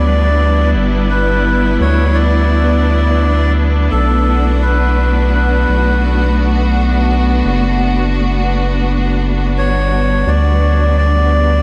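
A reedy, breathy melodica carries the melody over a lush, bowed string section holding sustained chords and a deep, round analog bass sitting up front, all three sounding together from the opening of this spacious, meditative ambient dub fragment cut from a longer piece. Dub echo trails the melodica's airy, nasal tone, while the strings move smoothly with vibrato through G6, Bm7 and back to G at 9.6 seconds over a gently swung sixteenth-note feel. Light reverb and a small room ambience frame the sound, with the dark, fast-attacking bass anchoring the low end.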